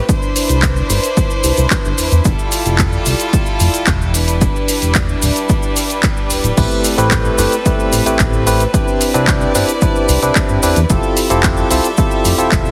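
A bright, barky tine electric piano arrives up front at 6.6 s, pumping with sidechain over a sleek, sensual nu-disco groove at 111 BPM, cut from a longer piece. Beneath it, a clear studio violin section sustains earthy bowed chords with light vibrato and the same pumping, while a glossy, dark chorused synth bass sits under a progression of Cmaj9, Fmaj9, Em7 and Am9. A punchy, tape-warm electronic kick and a layered house kit with crash, handclaps, hi-hat and shaker carry the straight 4/4 beat, a dry cabasa sits in the background, and the whole has light reverb and a heavily compressed radio sound.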